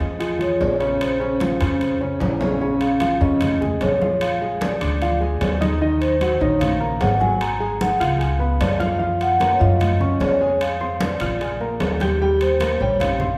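A mellow, dark vibraphone played with soft mallets and the motor off carries the melody in this driving, fiery Afro-Cuban jazz excerpt, its smooth, ringing tone sitting high in the upper register. Up front, a concert grand piano supplies intimate, natural accompaniment with deep bass and audible action noise, ranging across much of the keyboard. A pizzicato upright bass with steel strings adds a woody low end, while medium-tuned congas ring in the background and metal-shell timbales, entering at 0.2 s, sound distant in a larger space. The groove moves at 150 BPM in a straight 4/4 in Bb minor. A drum fill at 2.2 s leads into a new section at 2.6 s, where the harmony travels from Bbm7 and Bb7 through Ebmadd9, Db7 and a lush Gbmaj13 before settling on Eb6. The whole band sits in a wet recital-hall reverb that gives the piece a spacious, church-like glow, and the clip is cut from a longer performance.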